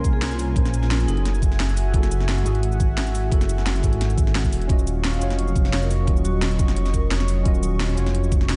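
A deep, rumbling detuned sawtooth bass sits up front in this dreamy, rolling excerpt of liquid drum and bass at 174 BPM in Eb minor, its saturated, beating tone holding the low end throughout. Alongside it, a knocking electronic kick and a layered kit with a cracking snare, bright hats and shaker carry an overdriven grit, both re-recorded in a small room. A worn, slightly out-of-tune tine electric piano adds mellow accompaniment through analog delay, while a smooth, slow-attack analog pad with chorus sustains chords from Bbm9 to Gbm9 and on to Ebm9 at 4.7 s. A metallic, ringing vibraphone sits in the background with medium motor vibrato and its own delay, playing brief melodic phrases near the start and again from 5.7 s. The mix is softened by light reverb and a rolled-off top end, giving the whole a hazy, late-night glow.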